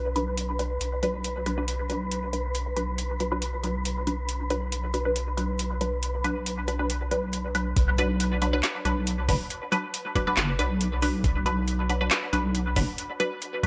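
A deep, dark wobble bass with chorus and tube saturation opens this brooding B minor deep dubstep passage, cut from a longer piece, alongside an airy, breathy wind-like texture and a muted, resonant dub chord stab that carries a filter sweep, phaser and dub echo. A garage kit joins almost at once at a half-time 138 BPM with light swing, bringing an overdriven woody snare, metallic hats and handclaps. At 7.8 seconds the wind texture stops and the drop lands with a gritty, thumpy, pitched-down electronic kick, while the soft bass carries on until 12.9 seconds under a light reverb.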